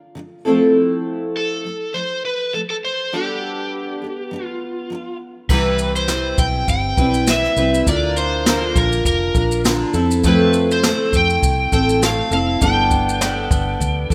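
Acoustic pop at 101 BPM with a gentle swung feel, heartfelt and easy-going, this excerpt from a longer piece opens on a full-bodied, double-tracked picked dreadnought acoustic guitar carrying the accompaniment, joined at 1.4 seconds by an up-front, overdriven slide guitar played with fingerpicks that carries the melody. At 5.5 seconds a dark, round, punchy foam-muted electric bass enters alongside a jazz brush kit with dark cymbals, a boomy kick, snare, crash and shaker, as the chords move through Fmaj7, Gadd9, Cmaj7 and Bb. Moderate plate reverb surrounds the rough home-demo mix.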